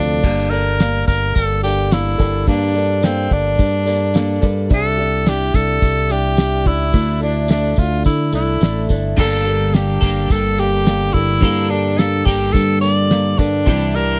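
A breathy, whispered tenor saxophone carries the melody up front in this wistful, reflective folk rock and heartland rock excerpt at 107 BPM in G dorian, moving over chords of Gmadd9, Cadd9 and Dsus2. A woody, boxy old ladder-braced acoustic guitar picks the accompaniment, while a fingered electric bass sits direct and up front beneath a cloth-damped, thuddy drum kit with dark cymbals, a fat snare and a tight kick, plus a jingly tambourine in the background. A clean, compressed twelve-string electric guitar with analog chorus sounds briefly at the very start and returns with its riff at 9.2 seconds, all captured in a dry, close 1970s-style studio sound.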